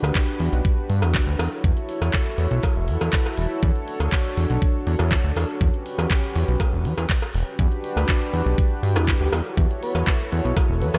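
Bathed in light reverb with a digital ambience, this sleek, groovy nu-disco excerpt moves at 121 BPM in a straight 4/4 in E dorian, cycling through Em9, F#m7/E and Bm9 harmonies. A knocking, up-front electronic kick and a crisp pop kit of handclaps, hi-hat and rim click drive the groove beside a small-room acoustic cowbell, while a fat, detuned sawtooth bass with a filter pluck sits forward and a dark, smooth pad breathes under sidechain pumping, chorus and analog delay. At 9.0 s a mellow, round octave-layered synth lead with vibrato enters in the background.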